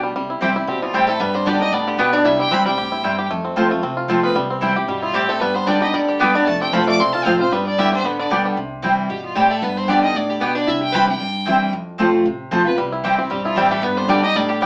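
A driving, lively bluegrass tune at 228 BPM with a swung feel opens on twangy, fingerpicked banjo and a full-bodied jumbo acoustic guitar up front, complete with finger squeak, joined by thumpy gut-string upright bass in the background, round double-strung mandolin stabs, and at 0.7 seconds a biting, clear fiddle with light vibrato alongside a metallic, nasal slide line on lap resonator guitar. The banjo drops out at 8.6 seconds and returns at 12.8 seconds, while fiddle and banjo share the melody over a simple C, G and F progression. The band sounds as if playing live in one room with a wet ambience and a small-speaker character, and the excerpt is cut from a longer piece.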